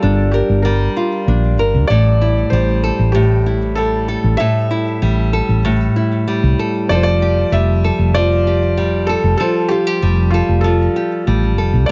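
Wistful and autumnal, this folktronica excerpt moves at 96 BPM in a straight 4/4, with a felt-muted upright piano carrying the melody in a soft, intimate voice that reveals audible action noise, 12-bit sampler grit and a digital delay. Fingerpicked nylon-string guitar arpeggios, small-sounding and also touched by digital delay, sit up front alongside a dark, round, amped hollow-body short-scale bass that is fingered beneath them. All three play throughout the clip over Gm7, A7(omit3) and F69 in a studio ambience with dulled highs.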